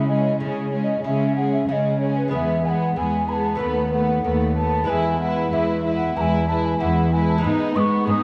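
A straight 4/4 pulse drives this brilliant, festive passage from a baroque-style concerto movement, cut from a longer piece. A mellow wooden flute carries the melody with a pure tone, soft attack and vibrato, sounding somewhat distant, while a violin section also plays the melody in the background with a close, reedy gut-string sound and light vibrato. A second violin section adds a rich, smooth-topped second line beneath, and a viola section fills in the accompaniment alongside a bright, delicate fingerpicked lute with double nylon strings, some of them octave-doubled. Up front, a cello section anchors the bass with a full, period-style chamber tone. The harmony moves from C#m through E and B7/D# to G#m, and a moderate scoring-stage reverb sets the ensemble in a dark, warm production.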